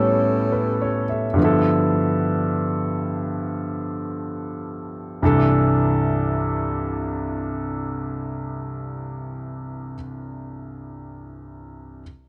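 Jazz ballad in free time and C major, a tender, late-night fragment cut from a longer piece. A vibraphone with soft mallets sounds only a brief melodic touch on C#5 in the opening half second, metallic and ringing with a slow motor vibrato and an airy mellowness. Beneath it, a clear concert grand piano carries the accompaniment through 12.0 seconds, ranging from deep bass at C2 up to E5, up front and polished, with long sustain and the audible noise of its action. A saxophone section holds sustained chords in the background for the first 1.4 seconds, a soft ensemble glow with jazz-style vibrato between G3 and A4. The harmony moves from A7 to G13 at 1.4 seconds and settles on C69 at 5.2 seconds, while the pace slows through those first passages. The sound is dry and close, like a 1970s-style studio recording with little reverb.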